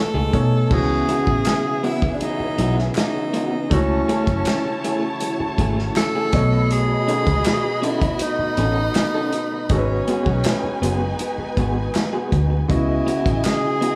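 A breathy, close-miked tenor saxophone sings a smooth, cinematic melody over intimate concert grand piano with audible action noise and a very quiet, mellow tonewheel organ through a slow rotary speaker at the start of this lush 1970s-style soul piece in C# minor at 80 BPM, joined almost at once by a slightly broken-up tremolo guitar riff in the background, a dark, foam-muted fingered bass and a tight, roomy soul drum kit, while a bowed string section with vibrato and portamento enters at 0.7 seconds, crisp handclaps arrive at 1.5 seconds, and light small-room reverb wraps the whole band as the chords move through C#m11, F#m9, B9 and G#m7.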